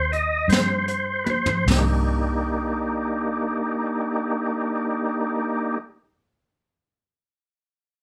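A slow 12/8 blues at 49 BPM (dotted quarters) opens by slowing down, with a brooding, mournful air in C minor as the thick, lightly overdriven tonewheel organ, up front with slow rotary speaker and chorus vibrato, takes a solo on sustained chords over a dark, round, foam-muted electric bass. The brushed jazz kit, airy and polished with a high-tuned snare, enters at 0.1 seconds on hi-hat, snare and toms, plays a fill from 1.3 seconds and drops out at 1.9 seconds. From 1.7 seconds the harmony moves from Cm to Cm9 as organ and bass carry on in a modest studio room, a live band cut from a longer piece.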